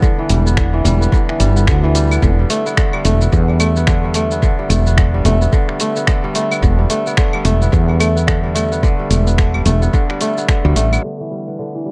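This earthy organic downtempo passage, cut from a longer piece, opens with a crisp, ringing fingerpicked kora playing arpeggios up front through a low-pass filter, analog delay and shimmer reverb, alongside a growly, round fretless electric bass and a gritty sampler-style kit of claves, finger snaps, hi-hat and shaker touched with tape echo. A deep, overdriven electronic kick anchors the swung 16th-note groove at 109 BPM in 4/4, while the harmony moves from Em7 to Gadd9/E in an echo-heavy, lightly reverberant mix. The kick drops out at 10.6 seconds and the bass at 11.0 seconds, leaving the kora and kit to close.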